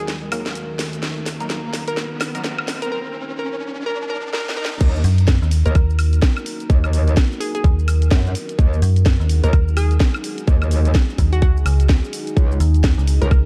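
A swung 127 BPM bass house groove in Eb minor, this aggressive, swaggering excerpt opens with a garage drum kit of cracking snare, hi-hat, shaker, woodblock and crash running fills under an electronic riser, while a hollow, bouncy square pluck carries the melody with cassette-tape coloring and dub echo, a deep, warbling ambient pad holds moody chords, and a nasal, band-passed chord stab sits in the background through a filter sweep. At 4.8 seconds the drop hits with a tight, up-front electronic kick and a saturated, wobbling metallic bass, joined at 5.0 seconds by a digital FM bass, both pumping against the kick. The chords move from Ebm to Dbsus2 near the end, and the dark production carries light digital ambience.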